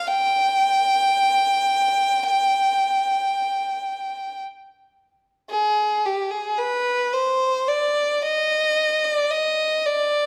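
A moderate recital-hall reverb, with a decay of about 1.5 seconds, surrounds a single bowed violin that sits close and up front in the sound. This short excerpt of Arabic music unfolds in free time in maqam hijaz on G, and its mood is melancholic and soulful. The violin plays solo for the full 10.3 seconds, moving between G4 and G5 with a smooth, even tone and a warm vibrato. The line falls into two passages, the second beginning at 5.5 seconds. The intimacy of the one player against the hall's gentle resonance gives the recording its melancholic, soulful character.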